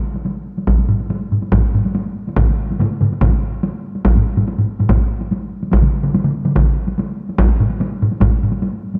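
A straight, driving 4/4 rhythm gathers speed through this powerful fragment of Japanese traditional taiko ensemble music, where a heavy-stick ensemble in a live room sits up front, joined at 0.7 seconds by a solo drum in a small room, a second small-room solo drum set in the background, and from 2.4 seconds a compressed, saturated solo drum pressed forward, under light reverb and a dark production.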